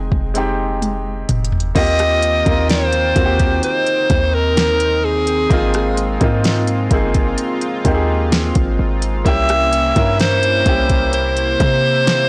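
A bright, vibrato-laden alto saxophone with delay sings the melody over a warm baby grand piano and a deep, boomy 808-style bass, joined at 0.1 seconds by a gritty, sampler-toned R&B drum kit whose fill from 0.8 seconds leads into a shimmering chorused pulse-width pad at 1.8 seconds, all in this dreamy, romantic contemporary R&B excerpt at 64 BPM in Eb major, moving from Fm9 through Eb69 and Ab6 to C7b9 in a blown-out, overdriven digital ambience.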